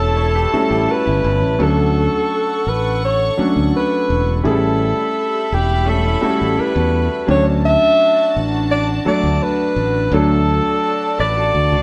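A breathy, whispered alto saxophone carries an intimate, jazz-style melody up front in this romantic soul excerpt at 84 BPM in D major, its soft attack and light vibrato floating over chords that move between A7 and Dmaj7. A growly, bright fingered electric bass sits up front beneath a smooth, vintage baby grand piano and a reedy, gut-string studio string section playing a second line. A dark, slightly broken-up electric guitar riff stays in the background, dropping out at 1.6 s and returning at 5.9 s, while the band plays live together in a moderate stone room with a one-second reverb.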